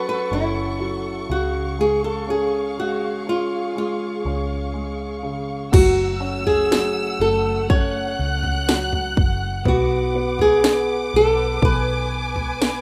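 An up-front, fingerpicked flamenco guitar carries the melody in this heartbroken pop ballad fragment in F# minor at a slow 61 BPM, over a grand piano, a lush bowed string section with vibrato, and a dark, round, foam-muted electric bass. At 5.7 seconds an electronic, layered house drum kit arrives, putting a punchy kick, cracking snare, toms and crash cymbal out front as the harmony moves from F#m and C# to F#m7 and Bm. The sound is dry and has the rough feel of a home demo.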